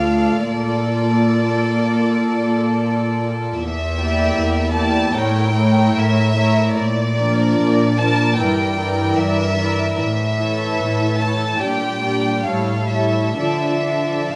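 Classical slow romantic movement for string orchestra, solemn and elegiac, drifting with rubato at 62-80 BPM as a close, intimate first violin section carries the melody with light vibrato above a pure, floating second violin line, woody, lush violas and up-front cellos playing sul tasto, all set in a moderate concert hall reverb and settling onto D minor near 13.4 seconds in this fragment of a longer piece.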